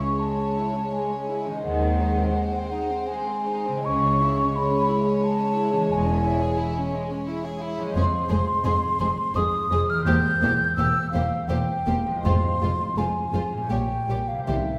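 In a flexible, rubato three-beat lilt, this melancholic, elegiac classical excerpt has a soft-attack violin section carrying the melody sul tasto while a second violin line, a dark, woody viola section and a ringing, fingerpicked concert harp in arpeggios fill the middle. A mellow, hollow concert flute sits up front with a pure, vibrato second line, and rich double basses and a distant, floating cello section hold the bass. Timpani join in the background at 12.3 s, and the whole ensemble is heard from further back in a wet scoring-stage reverb.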